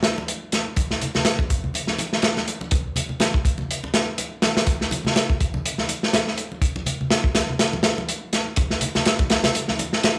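Energetic and swaggering, this short breakbeat excerpt rides a 123 BPM groove in 4/4 with a 56% swing on the sixteenths. A crunchy acoustic drum kit of kick, snare and hi-hat sits up front, its saturated, gritty tone pushed mid-forward with a rolled-off top, a tight kick and a medium-tuned snare. Congas join at 0.2 seconds, their thick skins struck with hard hands and carrying a live-room character beneath the kit. The drums run from the opening to the end at 10.2 seconds, while the congas drop out at 9.9 seconds. A light, small-room reverb gives the whole groove a close studio feel.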